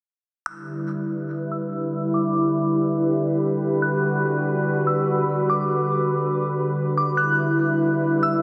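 Spacious and ethereal, this short hip hop excerpt moves at 143 BPM with a half-time feel in E minor, drifting from Em7 to Gmaj7 at 3.8 seconds and back to Em7 at 7.2 seconds. A detuned analog pad sits up front with soft-attack, sawtooth-and-triangle chords that warble through lush chorus, while a crystalline FM synth bell plays a high, decaying melody veiled in tremolo, low-pass filtering and diffuse ambient delay. Both parts sound together from 0.5 to 8.4 seconds inside a cathedral reverb with a 5.2-second tail, leaving the mix dreamy and soaked.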